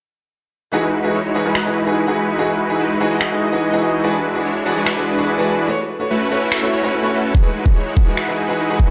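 A half-time 4/4 pulse at 145 BPM drives this bright, lush future bass excerpt in E major: huge, detuned supersaw chords with subtle chorus and a low-pass filter enter together with a brilliant, open baby grand piano at 0.7 seconds, both pumping under sidechain and trailing diffuse ambient delay; up-front electronic finger snaps arrive at 1.6 seconds, and a knocking electronic kick lands at 7.3 seconds, with the dreamy mix soaked in plate reverb.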